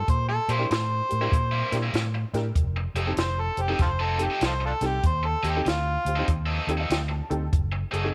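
Laid-back and soulful, this electric blues shuffle excerpt swings at 97 BPM in 4/4, with a gritty, overdriven harmonica up front playing a jazz-style solo full of scooped notes, tongue slaps and light vibrato until 6.3 seconds, when a detuned, jangly honky-tonk upright piano takes a fill. Beneath it, a round, dark fingered electric bass sits forward while a compact cocktail drum kit keeps hi-hat, punchy kick and high-tuned snare dry and natural, and a bright, picked garage guitar with overdrive plays a riff. The harmony moves from C7 to F7 and lands on F#dim7 at 7.5 seconds, all in a small room with light reverb and a faint mains hum.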